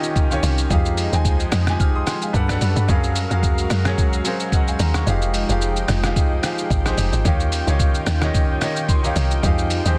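This deep, soulful amapiano excerpt opens with a clear concert grand piano, a lush unison pad and a muffled, sampler-style trip hop drum kit sounding together, with a woody log drum bass entering at 0.4 seconds. At 110 BPM in 4/4 with a light swing on the sixteenths, it sits in F minor and moves through rich extended chords such as Fm9, Eb9, Gmaj9 and Gbmaj9. The pitched-down, tape-warm drums place a thumpy kick up front alongside hi-hat, rim click and shaker, and the kick drops out briefly at 5.1 seconds. The punchy log drum bass, an FM sound with a noise layer, fast attack and decaying tail, also sits up front. The intimate, polished piano, with audible action noise and long sustain, plays accompaniment and adds a fill at 4.0 seconds, while the thick, detuned sawtooth pad warbles with chorus and sidechain pumping in the background. The mix is dry, dense and heavily limited in a modern style.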